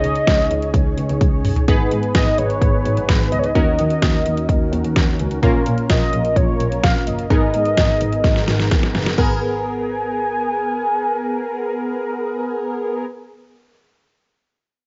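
This cool, melancholic synth-pop opens with everything sounding together at 128 BPM in a straight 4/4, sitting in G# dorian: a velvety, detuned sawtooth lead carries the melody with vibrato, chorus and a slapback echo. Beneath it, a punchy, funky polysynth comp built from sawtooth and pulse waves sits up front, its chorus-thickened chords moving through a filter sweep and a shifting notch. A bowed double bass adds a nasal, boxy low line with expressive vibrato and portamento. The electronic, layered drum kit drives hardest, with a punchy kick, deep snare, metallic hats, crash and toms, breaking into fills at 1.2 seconds and again at 8.2 seconds before dropping out at 9.3 seconds, leaving the synths and bass to carry the closing passage. The harmony moves from C#sus2 through G#m, D#m7 and A#m to G#madd9. A light reverb and the worn, warbling sound of old cassette tape give the whole piece a hazy, dulled top end and a drifting pitch, and the clip is cut from a longer piece.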